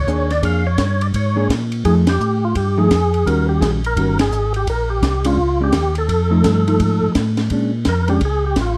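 Greasy and swinging, this short excerpt from a longer soul jazz organ trio moves at 170 BPM in 4/4 with a 63% swing on the eighths, built on Bb7#9, F7#9 and Eb7#9 chords, with band accents at 2.0 and 4.1 seconds. A fat, percussive tonewheel organ carries the melody with key click, chorus vibrato, slow rotary speaker and plate reverb before breaking into a solo at 7.5 seconds, while a mellow, round second tonewheel organ lays down a lightly overdriven bass line up front. A clean, fingered hollow-body jazz guitar comps beneath, and a compact cocktail drum kit with a high-tuned snare, punchy kick, hi-hat and ride adds a smooth, rolled-off pulse, all in a dark production with moderate studio reverb.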